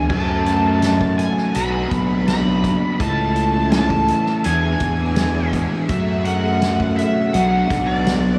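Psychedelic rock with a dark, mysterious mood, where a bright overdriven slide guitar carries the melody through subtle chorus and analog delay over a double-tracked overdriven electric guitar riff spun through a rotary speaker, a round, punchy fuzz bass, swirling vintage string machine chords under phaser in the background, and a distant, roomy soft-mallet drum kit, all bathed in a dreamy hall reverb.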